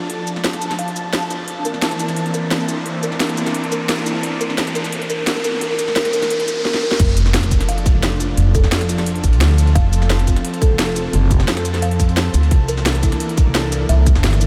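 At 174 BPM in a straight 4/4, crisp hats, shaker, a cracking snare and crash from the drum and bass kit carry a build-up of liquid drum and bass in F major, a short cut from a longer piece, while an airy, breathy pad pumps under chorus and phaser and a mellow kalimba plucks low-passed, tape-echoed arpeggios over a background riser. After a drum fill, the drop lands at 7.0 seconds with an impact, bringing in a tight, up-front electronic kick, a thumpy, woody pizzicato upright bass with tube saturation, and a very quiet, gritty, pitched-up sampler-style jungle kit with a high-tuned snare. The lush, dreamy mix is soaked in a huge ambient reverb, with the harmony moving between F6 and C13.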